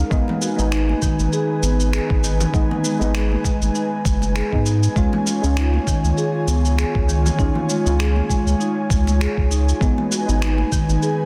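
A deep, mellow chord stab and an airy, breathy pad open this short organic downtempo excerpt in G# dorian, both softened with chorus and pulsing under sidechain pumping, with the stab also trailing a digital delay and sitting in the background. A round sine sub bass sits up front, joined almost at once by a woody marimba played with soft mallets, its arpeggios echoing through a digital delay. At 99 BPM in 4/4 with a gentle 16th-note swing, a thumpy, gritty electronic kick and a tape-toned electronic shaker with finger snaps give the groove a sampled, compressed character, re-recorded in a large room, with soft clipping on the snare. Bright, vintage-sounding congas played with hard hands enter at 0.3 seconds further back in the mix. The harmony moves from G# minor to C# at 5.0 seconds and returns to G# minor at 9.8 seconds, all framed by light reverb, a digital ambience and a dense, heavily limited master that keeps the earthy mood close and full.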